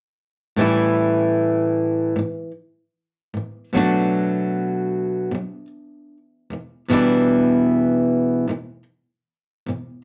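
A lone flamenco guitar enters at 0.6 s, fingerpicked on fresh strings with a warm, close, up-front presence. This short cut from a longer pop piece moves at an unhurried 76 BPM in 4/4, with a gentle swing on the sixteenths that gives the accompaniment a relaxed, lilting feel. The mood is tender and wistful. The guitar spans from a low E2 to F#4 and carries the harmony through A7, Bm7 at 3.7 s and Em7 at 6.5 s. A wet small-room reverb wraps the instrument in a snug, intimate space, keeping its acoustic tone full and warm through to the end at 10.0 s.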